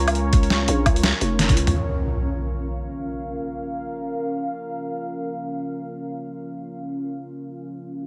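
In a free-time half-time drum and bass feel in Bb minor, tuned slightly flat, a tense, spacious excerpt opens with a drop where a knocking electronic kick, a gritty pitched-down boom bap kit with hi-hat, snare, toms and woodblock in small room ambience, and a growling, buzzy 808-style bass play over a deep, moody sawtooth pad carrying sustained chords with chorus, reverb, 12-bit sampler grit and sidechain pumping, until a drum fill gives way at 1.7 seconds to an electronic impact lasting until 3.2 seconds as the pad rings on to 8.1 seconds.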